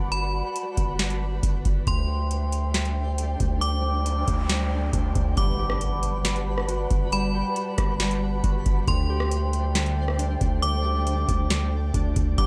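Nearly dry, this excerpt of atmospheric cloud-rap floats by at 137 BPM in a half-time 4/4 feel, dreamy and drifting in G major as the harmony moves between Gmaj7 and D7sus4. An up-front, booming analog drum machine with a deep kick, crisp snare, metallic hats and rim clicks carries a tape-warm edge and the sound of a large room, sitting beside an up-front, long, sine-pure 808-style bass that hits fast and decays. Over them, a mellow, hollow flute ensemble holds airy, tongued chords with vibrato and a sidechain pumping, while a twinkling granular texture sparkles in the background with octave-up shimmer and its own reverb. A metallic, inharmonic FM bell rings out a high melody from about 0.1 seconds, its chorus and delay trailing each bright, decaying note. A noise sweep builds in the background from 4.0 seconds into an impact at 5.4 seconds, where glassy digital keys enter with chorused, delayed arpeggios that carry a sub octave, a noise layer and a filter sweep.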